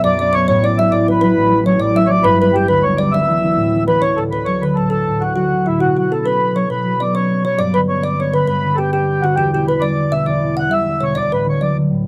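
A mellow, reedy accordion carries the melody up front, its full, rich tone-chamber voice leading this bright, rollicking Celtic slide in D major. The tune moves at 135 beats per minute in dotted quarters, in a straight-felt 12/8. Beneath it, an acoustic concert harp supplies the accompaniment from the low bass up to E4, thumb-plucked and ringing, sitting up front alongside the accordion. A kalimba plays a second line in the same register as the melody, its short, woody thumbnail plucks sounding bright and airy against the solid board and sitting a little quieter in the mix. The harmony moves from Dadd9/A through G and Dsus2, then settles on D at 4.0 seconds before passing through Bsus2, G and Em7 back to D. The sound is that of a dry, close 1970s-style studio with light reverb, and the passage is cut from a longer piece.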